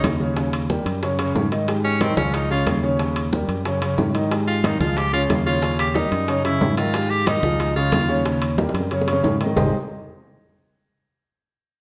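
A straight 4/4 Afro-Cuban jazz groove drives this fragment at a brisk 182 BPM. Thick-skinned, medium-tuned congas sit in the background, very quiet high-tuned bongos sound tight, and ringing metal-shelled timbales sound close and dry. The mood is sophisticated and danceable, built on a cycling progression of Eb7, Gb5, Ab5 and Db that arrives on Abmaj7 at 9.6 seconds. Up front, a bright, forceful tenor saxophone solos with vintage jazz vibrato and a punchy edge until 8.2 seconds, while a warm grand piano accompanies with an intimate, natural tone in which the action noise is audible. A dark, round fingered electric bass comes through direct and amped, a drum fill from 8.6 seconds leads into a brief new section before the cut, and a wet large-studio reverb surrounds the ensemble.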